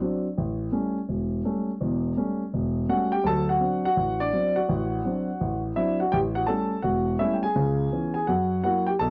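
This is a dry, close recording with a 1970s studio character, so the piano sits up front and close to the listener. It is a short fragment of a relaxed, swinging solo jazz performance at 167 BPM in 4/4, with the eighth notes given a lilting swing feel. A warm concert grand carries everything alone from 0.0 to 9.1 seconds, ranging from a deep bass E1 up to A5, its long sustain letting notes ring into one another. The harmony stays rooted in A mixolydian, moving from A7 to D7 and back before turning through C#m7 to F#7 near the end. Tuned slightly below standard pitch at A4 = 439 Hz, the piano has a mellow, easygoing glow.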